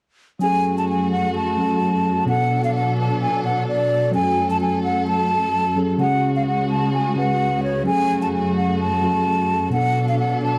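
A half-time hip hop groove at 129 BPM in 4/4 carries this brooding, menacing F# minor excerpt, tuned slightly flat to A4 = 435 Hz, moving through F#madd9, Bm7 and C#sus4 from 0.4 to 10.6 seconds. A breathy, hollow silver concert flute sits up front with vibrato and tongued notes on the melody, while a clean tine electric piano heard through its built-in speakers plays accompaniment and a bowed studio string section holds focused, smooth-topped sustained chords beneath. Light small-room reverb and vinyl crackle give the production a dark, warm cast.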